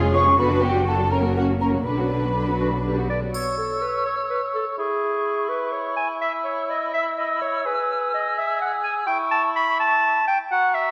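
A muted string section opens this playful, whimsical film cue in 6/8 at 83 BPM. Con sordino violins carry a veiled melody in B minor over lush violas, a distant cello line in the background and close, up-front double basses, each section bowed with vibrato. A pure, hollow silver concert flute with a crisp attack enters almost at once from a distance, and a smooth-topped solo clarinet joins up front at 2.6 s. At 3.3 s the strings fall away, the key shifts to C# minor, and the woodwinds take over as flute, clarinet and a roomy, mellow cor anglais play their second lines. A dry, dark-toned triangle adds a brief accent as this passage begins, and the harmony moves from C# minor through a chordless stretch toward E. A moderate scoring-stage reverb gives the quirky, magical mood a gentle sense of space.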